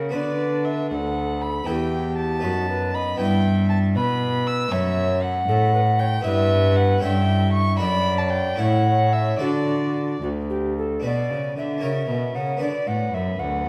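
Classical baroque-style sonata movement in a radiant, serene 6/8 at 77 BPM, settling into D major from 4.7 s. An airy, chiffy alto recorder carries the melody over a reedy gut-string violin second line, a brilliant, plucked Flemish-style harpsichord accompaniment and a rich, nasal cello bass with light vibrato, all set in a wet recital hall reverb in this fragment cut from a longer piece.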